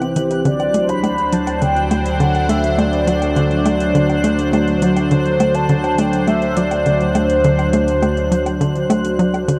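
This short excerpt of ambient, sequencer-driven space music unfolds in a straight 4/4 with a cosmic, expansive mood. A tight, punchy sequencer bass drives the riff with a nasal, filter-plucked bite, its tone evolving under a filter sweep and trailed by analog delay, while a low analog drone hums beneath it with pulse-width modulation and chorus. A sweeping resonant pad sits up front, bright and full-bodied with detuned, ring-modulated colour and filter swells, holding sustained chords that land on a D7 at 0.5 seconds. Over this, a mellow horn-like synth lead carries the melody with a round, vintage, warbling vibrato, thickened by analog chorus and delay, until it stops at 9.2 seconds. Dry, overdriven electronic hi-hat and woodblock add metallic ticks with delay, and a twinkling granular texture sparkles with an octave-up shimmer in the background, all bathed in a huge ambient reverb.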